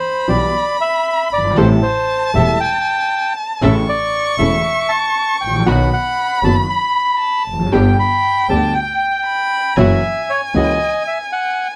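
Melancholic and tense, this tango excerpt moves at 117 BPM in 4/4 with a rubato feel, its reedy, up-front bandoneon carrying the melody over a chord path from Em through Am7, A, B and G to F#7. A warm violin with vibrato and portamento sings an expressive bowed second line above, while a clear concert grand piano gives smooth, deep-bass accompaniment and a bowed, earthy double bass holds the low end. A dark chamber string section, played sul tasto with light vibrato, adds soft-attack stabs in the background, all set in light reverb.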